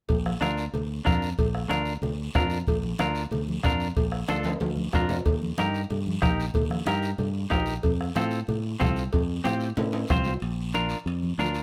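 Lightly reverberant, this sunny, joyful cumbia excerpt in Bb major moves at 186 BPM over Bb, Eb and F chords, with a round, punchy fingered electric bass up front, a soft-beater bombo, damped, low-tuned congas in the background, ringing, saturated cowbell and timbales, a raspy, dry guiro, and a bright, picked semi-hollow electric guitar entering at 0.4 seconds, while drum fills arrive at 4.3 and 9.8 seconds.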